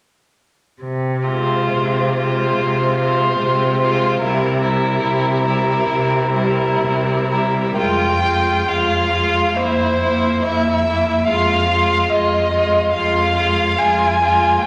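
A rubato 4/4 pulse drifting between 59 and 74 BPM carries this elegiac, melancholic slow movement for string quartet in F minor, cut from a longer piece. A bowed cello opens the bass at 0.8 s with a soft attack, expressive portamento and vibrato, sitting up front. At 1.3 s it is joined by a smooth, even first violin singing the melody from a distance, a focused second violin holding a close inner line, and a more distant viola accompaniment. The harmony moves from Fm/C to C7 before a second section begins at 7.8 s on Fm, and the whole quartet is bathed in the wet glow of a recital hall.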